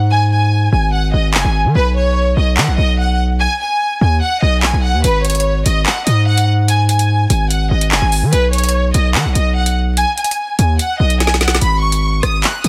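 A heavy, saturated 808-style bass with a fast attack and decaying tail anchors this menacing, tense drill excerpt in a half-time feel, joined almost at once by a lush, bowed violin section with vibrato and a smooth top, while an electronic drill kit of woody snare, metallic hi-hats, rim clicks and handclaps enters at 1.3 seconds, all set dry and up front in a dense, heavily limited master with vinyl crackle.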